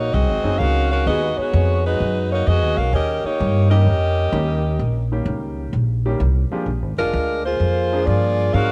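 A swung eighth-note feel drives this brassy big band swing passage at 128 BPM in 4/4, cut from a longer piece and lasting under nine seconds. A close-miked saxophone section carries the melody up front, its tight, jazz-style blend touched with light vibrato and a warm tone. The upright bass, plucked on steel strings, gives a woody, thumpy low line that sits just as forward in the mix. A clear, intimate baby grand piano joins at 0.4 seconds with accompaniment, its natural tone and audible action noise coloured by cassette tape, and it sits lower in the balance. The harmony moves through Ab7, Abm7, Eb7 and Bb7, framed by a touch of studio reverb and the homespun character of a cassette home recording.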